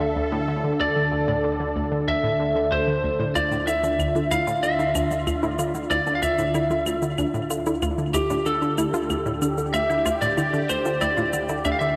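Cosmic and expansive, this short cut from a longer piece of ambient, sequencer-driven space music moves at 94 BPM in D minor, with an airy, evolving pad holding a Dmadd9 chord up front while a lightly driven, twangy lead guitar carries the melody through tape echo. Beneath them, a round, detuned analog pluck with ring modulation and a filter sweep repeats a low riff, and at 3.4 s a lush unison pluck arrives in the background with arpeggios, alongside overdriven electronic shaker and claves. A lush hall reverb gives the whole mix a deep, spacious sheen.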